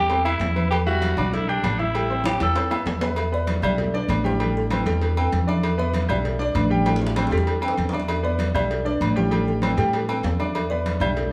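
Driving 4/4 salsa at 195 BPM in E minor, this fiery passage from a longer piece rides on ringing distant congas, tight high-tuned cowbell and bongos, and close, dry metal-shell agogo bells and timbales, with drum fills at 2.2 and 6.9 seconds, while a woody, thumpy pizzicato upright bass sits up front and a clear, worn grand piano comps on Am7 and Em7 as a raspy, growling tenor saxophone leads until 2.8 seconds before an airy, hollow-toned kalimba takes the melody through the rest of the moderate large-studio reverb.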